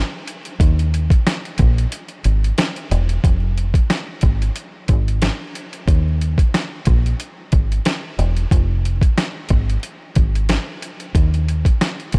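A lightly swung sixteenth-note groove in four drives this short boom-bap hip-hop clip, cut from a longer piece, with a gritty, reflective mood. The sampler-style drum kit arrives at 0.3 seconds, its compressed, pitched-down hits built around a thumpy kick, a medium-tuned snare and hi-hat, all sitting up front. The fingered electric bass joins at 0.6 seconds, dark and round with a foam-muted, punchy tone that sounds direct and amped, sharing the forefront with the drums. A break arrives at 1.9 seconds before the second section begins at 3.2 seconds and carries through to the end. The sound is dry, with a layer of vinyl crackle adding dusty texture to the pairing.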